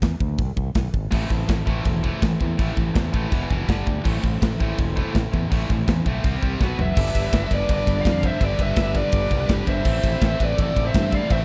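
Heavy metal at 165 BPM in A minor with a brooding, heavy mood, this excerpt opens with a growling, overdriven fingered bass and a tight, polished metal drum kit, its bright cymbals sitting up front. At 1.1 seconds three picked guitars join on the riff: a double-tracked, compressed distorted electric guitar, a scooped high-gain guitar, and a tight distorted guitar that drops out near 6.9 seconds. As a drum fill leads into the second section, a pair of bluesy overdriven lead guitars with a dark tone enters at 6.6 seconds, one carrying the melody and the other a second line, set in a small room within a warm mix.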